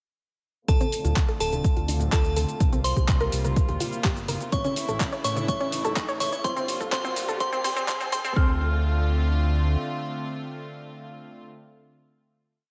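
The mix has a light reverb and a high-passed sheen. It is a short progressive house piece in D minor at 125 BPM, emotional and driving in mood. An overdriven electronic kick sits up front in a four-on-the-floor pattern, joined by a tape-warm deep house kit of claps, shaker and open and closed hats, plus a very quiet loop of ringing congas. A round, dark bass with a dotted rhythm, a detuned analog pluck running a 16-step arpeggio with chorus and tape echo, and a floating bowed string pad all pulse with sidechain pumping. Above them a glassy FM bell plays a repeating riff in octaves, warbling through chorus, tremolo and tape echo. The piece builds from the start, with filter sweeps on the pluck and strings over Dm7, C7sus4, A and Gm7, and a background riser entering at 3.7 seconds. The drums and pluck fall away around 8.4 seconds, leaving bell and strings on a final Dm7 that rings until 11.4 seconds, with the bass holding on beneath them until about 9.8 seconds.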